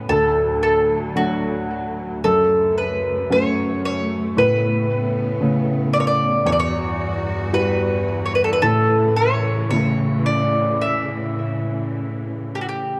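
Celtic folk in the manner of a slow air, this haunting, longing passage, cut from a longer piece, drifts in rubato at around 52-58 BPM in 4/4, tuned slightly high to A4 = 441 Hz. A woody, up-front mandolin carries the melody from F#4 to E5, its picked double strings sent through a tape echo. A felt-muted upright piano, intimate and mellow with audible action noise, accompanies from low D2 up to F#4, while a lush, bowed symphonic string section sits further back, holding sustained chords with focused vibrato and a smooth top. All three parts play throughout the 13 seconds, moving through D, F#m, Aadd9 and Emadd9 before settling on A. The dark production is set in a moderate concert hall reverb of 2.4 seconds, giving the trio a gentle sense of space.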